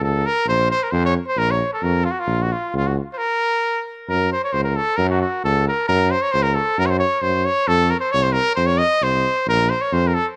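Bittersweet and fiery, this short Balkan folk fragment in two pairs a punchy cornet melody, touched with tape echo and light vibrato, against a clear tuba bass line, both played up front in a classical style. The piece shifts into a new section at 4.1 seconds. The horns sit in a moderate studio reverb within a dark, warm production.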